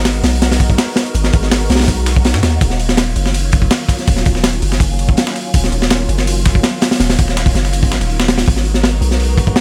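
A crunchy, saturated breakbeat kit sits up front in a small room, its tight kick and high-tuned snare gritty and dark with a rolled-off top, while a compressed, dusty soul sampler-style kit with high-passed snare and hats ticks along in the background. This nostalgic, atmospheric drum and bass and jungle cut at 164 BPM in G# dorian rides a deep, long 808-style sine bass with a fast attack, under a silky, vintage string machine whose slow-blooming chords shimmer with phaser and ensemble chorus. The harmony moves from G#m9 to D#m9 at 2.6 seconds and returns to G#m9 at 8.5 seconds before this excerpt of a longer piece is cut off.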